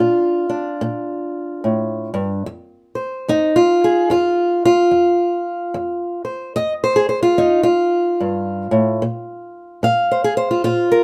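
This brief excerpt of acoustic country blues opens directly on a single fingerpicked acoustic guitar, its old ladder-braced body giving a woody, boxy tone heard up front. The mood is rollicking yet soulful, carried by a relaxed swing in 4/4. The old strings lend the sound a warm character, and the guitar ranges from low F2 up to F5 across its 11 seconds as the lone voice. The harmony moves from Bb to F5 at 2.5 seconds and then to Bb5 at 9.0 seconds. A light reverb surrounds the playing, keeping it intimate and close.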